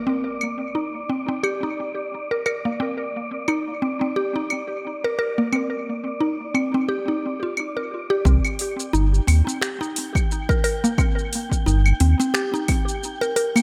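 Warm and earthy, this organic downtempo excerpt at 88 BPM in C minor opens on a woody, mallet-like synth pluck playing arpeggios through chorus, phaser and analog delay over an airy, breathy wind-like tuned noise texture, with a deep house drum kit of claves, finger snaps, metallic hi-hat and shaker arriving at 0.4 seconds with overdrive and dub echo, before a round, dark analog bass with sidechain pumping and a punchy, overdriven electronic kick drum join up front at 8.3 seconds, inside a moderate plate reverb and an echo-heavy mix.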